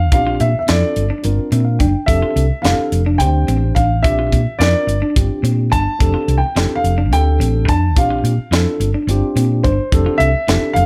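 Set in a straight 7/8 at a brisk, driving pace, this slick electric jazz fusion clip is cut from a longer piece. A dark baby grand piano carries the melody in a mellow, intimate voice, its short sustain and audible action noise touched with slapback echo and plate reverb. Beneath it, a hollow-body short-scale electric bass, fingered and round, sits up front alongside a crisp fusion drum kit with a high-tuned snare, punchy kick and airy hi-hat in a polished studio room. A tine electric piano comps through its built-in speakers and adds a brief fill from 1.2 to 2.1 seconds. A twangy, compressed electric guitar picks bright stabs from 0.3 seconds, lightly coloured by subtle chorus and slapback echo. The harmony alternates between Bb69 and F69 throughout, all under light reverb.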